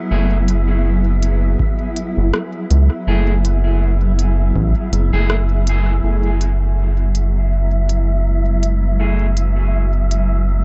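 A dark, dry mix with its top end rolled off gives this slice of a longer ambient dub piece a close, muted sound, meditative and spacious at 81 BPM in 4/4, with a gentle swing on the sixteenths in F# minor. A round, deep analog bass sits up front with a fast attack and sustained notes between F#1 and C#2, while a blurred, detuned granular cloud pad slowly evolves alongside it, holding sustained chords in its own reverb. High above, a breathy, wind-like tuned noise layer drifts on a sustained E5, faint and shadowy. A slightly broken-up, picked electric guitar adds low-passed stabs trailing dub echo, and from 6.0 s a filter sweep colours it as the harmony moves from F#m9 to F#7sus2. An organic electronic kit of crisp hi-hats and rim clicks, tape-warm and re-recorded in a small room, carries its own dub echo, joined by a deep analog kick drum only from 1.6 to 4.7 s.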